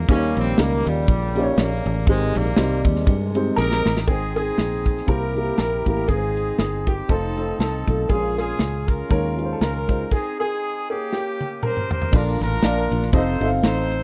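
A warm horn section carries the melody over a round, foam-muted fingered electric bass, a dark, woody upright piano and an up-front drum kit with bright cymbals and a punchy kick in this jubilant, reverent uptempo gospel excerpt at 120 BPM in Ab major with a light swing, where a clear, intimate baby grand piano with audible action noise adds its own melodic line from 3.6 to 12.1 seconds, a drum fill at 11.1 seconds closes a stop, and the dry, close 1970s-style sound sits in a small room.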